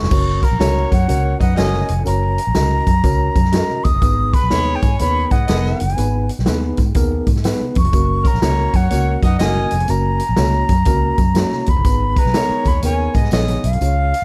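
A breathy silver concert flute carries the melody through this joyful, danceable snippet of uptempo 1960s-style soul, its vibrato and lifted highs trailed by a touch of tape echo. Underneath, a round, foam-muted electric bass and a swinging big-band drum kit sit up front, the punchy kick and medium-tuned snare giving the 123 BPM groove its swung 4/4 drive in F# major. A worn, slightly out-of-tune tine electric piano supplies lightly overdriven accompaniment through its built-in speakers, while a tight horn section with pop-style vibrato adds a second line from 0.4 seconds. Jingly tambourine sits in the background, joined by very quiet, band-limited congas with thin, low-tuned skins. The harmony alternates between F# and G#m in a dark, warm production with little reverb.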